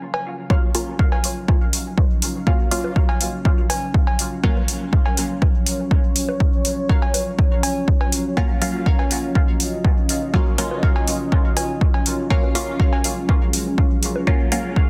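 A dense, heavily limited modern mix with light reverb frames this cavernous, hypnotic dub techno cut, taken from a longer piece and moving at 122 BPM in a straight 4/4 in Eb minor. A deep, moody pad opens at 0.0 s on a rootless Ebm9, its detuned sawtooth unison and sub octave warbling through chorus and built-in reverb while sidechain pumping makes it breathe. Analog, tape-warm cowbell and bongos enter at 0.1 s, pumping through dub echo. From 0.5 s an overdriven, punchy electronic kick sits up front, joined by metallic, overdriven hi-hats. Two filtered dub chord stabs share the Ebm9 harmony: a muted, detuned sawtooth-and-square riff plays higher, smeared by phaser, lush chorus and echo. A lower, bright stab part of fast-attack, decaying filter plucks sits in the background, drops out after 4.6 s and returns at 8.4 s, trailing phaser and dub echo into the murk.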